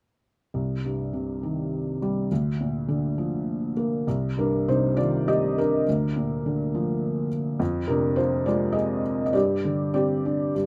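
Classical solo piano in C minor, brooding and moody, where a felt-muted upright piano plays alone from 0.5 to 10.7 seconds at 102 BPM in a rubato 3/4, its soft, mellow, intimate tone sitting up front with audible action noise in light reverb, moving through Cm, Bb/D, Fm and a closing Gsus4 in this fragment cut from a longer piece.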